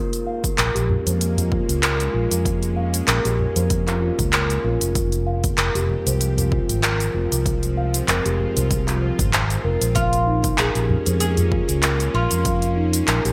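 Organic downtempo with a meditative, hypnotic pull, this excerpt sets bright, airy steel tongue drum arpeggios with delay over a detuned, string-like sawtooth drone that pumps and blooms in its own reverb, a very quiet quartz singing bowl with slow beating, a crisp, tape-warm afro-pop kit of handclaps, hi-hat and shaker under gated reverb, a punchy overdriven electronic kick, a dark, round fretless bass held up front, a low-tuned tabla with a short ring, and a woody, double-stringed oud melody with delay entering at 9.9 s, all framed in a bright 1980s-style digital plate-reverb sheen.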